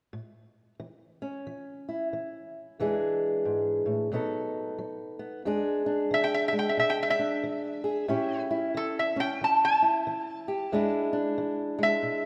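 A fingerpicked old ladder-braced acoustic guitar, dark and boxy with old strings, opens this gritty, swaggering excerpt of acoustic country blues in E mixolydian at 91 BPM with a swung 4/4 feel, moving through A, E7 and B7 before an up-front, nasal, metallic lap resonator guitar played with slide and fingerpicks enters at 6.1 seconds to carry the melody over E7 and A7 changes in a moderate scoring-stage reverb.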